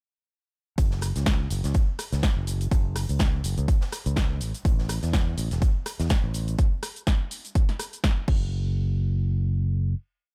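Dry and close, with little reverb, this short, complete deep house piece has a hypnotic, swung groove that plays as a single drop before a final hit at 8.5 seconds. An electronic kick sits up front with a layered, tape-warm punch, laying down a steady four-on-the-floor pulse, and it was re-recorded in a large room. A punchy analog drum machine programs the hats and backbeat, with closed and open hi-hats, shaker, rim click, snare and a crash. Further back, a big rock drum kit adds a looped breakbeat with edits, its medium-tuned snare and hats filtered and the hats pumping against the sidechain until it drops out at 6.6 seconds. The fingered electric bass is bright and growly, playing a syncopated riff up front that pumps with the sidechain and carries on alone into the final hit until 9.9 seconds.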